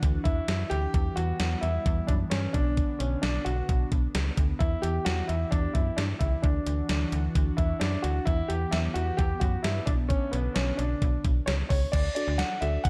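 A gated 80s digital drum machine drives this upbeat, bright synth-pop piece at 131 BPM in straight 4/4, its thumpy kick, gated-reverb snare, hi-hat and crash sitting up front with a tape-tinged, large-room character, while a snappy FM bass with a metallic attack holds down the low end. A grand piano carries the melody from 0.2 s with slapback echo, over a swirling, phased analog pad of sustained chords in the background that moves through Dadd9, Em and Bm in D major. Near the close, at 12.2 s, muted, dark synth keys with chorus briefly join as accompaniment, under a light room reverb.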